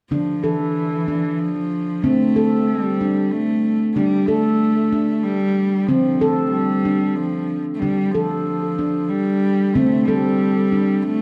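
Hypnotic and meditative, this short world piece cut from a longer work moves at 93 BPM in a straight 3/4 in D minor, pairing a close, intimate cello melody (bowed sul tasto by one player with light vibrato and a soft attack) with ringing, airy handpan arpeggios played with soft fingertips, both up front with tape echo throughout the full 11.2 seconds. A wet echo chamber reverb and small room ambience carry the cassette-tape sound over chords that circle from Dm through D7sus4, D5 and F/D.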